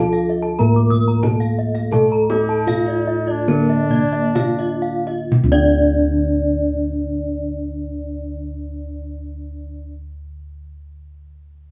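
This Balinese gamelan passage in D pelog feels brilliant and hypnotic, moving in 4/4 at a tempo between 59 and 102 BPM that slows through its first 5.3 seconds. The melody sits on a mellow, soft bronze metallophone struck with padded disc mallets, its paired tuning producing shimmering beats in a boxy small-room tone. Beneath it, a lower metallophone played with a wooden mallet carries the accompaniment, while two more metallophones struck with horn mallets spin bright, paired-tuned arpeggios high above, one of them airy. Round, beating bossed gongs hold the bass up front with a vintage, band-limited character, and a tight kendang under hard hands drives the rhythm until 5.8 seconds. From 2.3 seconds a trumpet in a bucket mute adds a veiled, punchy second line with light vibrato, all set in a moderate studio reverb that captures the ensemble playing live together.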